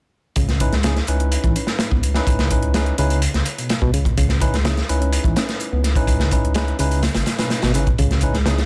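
A crunchy, saturated breakbeat drum kit sits up front with a tight kick, medium-tuned snare and dark, rolled-off top, driving this funky, gritty breakbeat fragment over a deep, thick sine sub bass, a reedy electric piano riff on a C#m9 colored by harmonic tremolo and tape echo, clean tine electric piano stabs through a combo amp that join at 0.6 s with their own tape echo, and an overdriven analog electronic hi-hat tucked in the background, all in a dry space.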